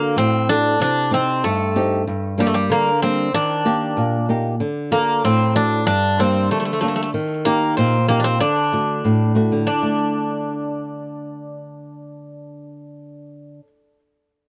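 A dry, close 1970s-style studio sound with light reverb frames this brooding, bittersweet Greek folk excerpt for a bouzouki band, moving at 95 BPM in a straight 2/4 in D phrygian dominant. Up front, a bright, metallic Greek bouzouki picks the melody on double strings, some doubled at the octave and touched with tape echo, while a woody flamenco guitar with old strings fingerpicks the accompaniment beside it, both playing throughout. The harmony circles through D, Cm, Gm and Eb before settling on a bare D5 as a new section begins at 9.7 seconds.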